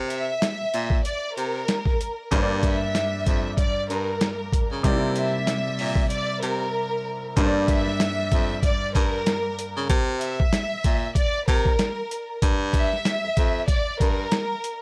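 Boom-bap hip-hop with a dark, moody swing, where a bright, scooped baritone saxophone carries the bass line and a smooth, bowed studio violin section sings the melody up front over a compressed, pitched-down sampler drum kit with a thumpy kick, while a vintage grand piano with deep lows and a cassette-tape tint comes in at 2.3 seconds and drops out at 9.9 seconds, all captured in a dry, gritty hardware recording.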